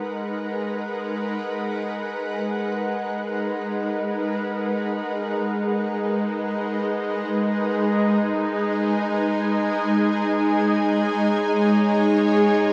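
A dark, cathedral-like reverb with a long 6.1-second tail surrounds this short ambient excerpt, cut from a longer piece, giving it a spacious, serene feel. In free time and G# minor, a shimmering pad sits up front, fading in from the start and holding a single G#m7 chord across its range from G#3 to G#5. Its tone is ethereal and bright, with an octave-up shimmer, a warbling, detuned vintage quality, a granular texture, chorus and slow attacks that melt into long releases. At 7.6 seconds a calm, organ-like drone enters in the background, its detuned unison sine tones thickened by ensemble chorus and evolving between G#3 and D#4. The two parts sustain together until the end at 12.7 seconds.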